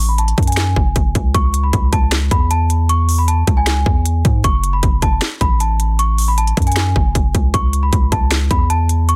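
A delicate, bell-like celesta melody, filtered and set back in the mix, opens this dark, brooding half-time trap excerpt at 155 BPM in C# minor alongside a deep, mellow sine 808 bass up front, before an electronic trap kit of hard-clipped kick, sharp snare, crisp hi-hats and finger snaps joins at 0.2 seconds, all over F#madd9 and C#m chords in a dry, dense, heavily limited modern master.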